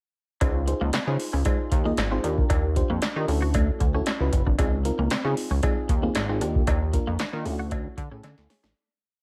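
Feel-good and smooth, this short early-eighties boogie funk piece moves at a mid-tempo 115 BPM in a straight 4/4, cycling through lush major-ninth chords from Dbmaj9 to Ebmaj9 and Dmaj9. An electro analog drum machine sits up front with a deep kick, a punchy snare layered with handclaps and metallic hi-hats, its overdriven sound re-recorded in a large room, while a cowbell taps out vintage, band-limited quarter notes. The chorused synth bass is glossy and fat, playing a syncopated boogie line of pulse and sawtooth tones with muted ghost notes and slides. A mellow FM electric piano comps syncopated rootless chords with grace notes, and a bright, twangy clean electric guitar with analog chorus picks a muted single-note riff in the background. The whole track sits in a digital ambience, and from 6.7 seconds it fades out as the electric piano adds a closing fill and the drums finish with a fill at 8.2 seconds.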